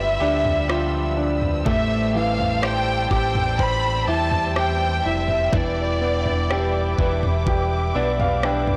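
Pop ballad in A minor at a slow 62 BPM in straight 4/4, melancholic and full of longing, heard as a short cut from a longer piece. A rich, focused violin section carries the bowed melody up front with vibrato and a smooth top until 7.0 s, while a lush symphonic string section holds sustained chords in the background. A clear concert grand piano with deep bass and short sustain provides the accompaniment and closes with a fill from 7.5 s. A direct-recorded clean electric guitar picks compressed arpeggios through analog chorus and delay, and a dark, round fingered electric bass sits punchy and up front. A produced, layered pop drum kit enters at 0.4 s in the background, with a knocking kick, rim click and toms, and soft clipping on the snare. The harmony moves from G7 to Am7 and then Em7, and the whole recording has a blown-out, overdriven character under light reverb.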